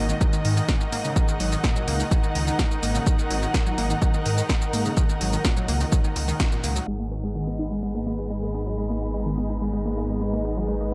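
A punchy, tape-tinged electronic kick sits up front in this driving, hypnotic melodic techno excerpt, alongside a menacing, detuned sawtooth bass that swells and pumps against it with a saturated edge. An analog drum machine adds snare, hi-hat, shaker and crash cymbal with a small-room character, while a round, bright analog pluck spins arpeggios through chorus and digital delay, ducking with the sidechain. Above them, a rich studio string section lays a smooth, vibrato-laden bowed texture, and a very quiet, warbling drone swarms underneath with granular, phased unease. The full band hits an accent at 6.4 seconds, and at 6.9 seconds the harmony settles as a thick, lush unison pad arrives with chorus and phaser while a filter sweeps across the pluck. The drums fall away by 7.0 seconds, leaving the pad, strings, bass, pluck and drone to carry the close under light reverb and a low-pass filter.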